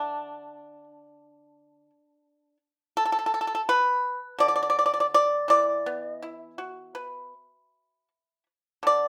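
A solo pipa plays this brief, pastoral fragment of traditional Chinese music, its fingerpicked notes percussive and placed up front as they range from D3 to E5. The serene line moves in a free, rubato 4/4 with uneven beats, lasting 9.1 seconds. A moderate studio reverb surrounds the rough, home-demo sound.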